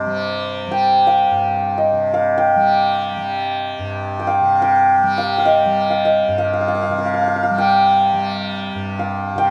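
Light reverb gives this brief Hindustani classical passage a gentle sense of space, and the meditative, solemn mood unfolds in free time across its 9.5 seconds. Up front, a hammered santur carries the melody between C5 and G5 with a ringing, shimmering tone. Beneath it, a softly plucked tanpura holds a bright, buzzing drone from G2 to G3.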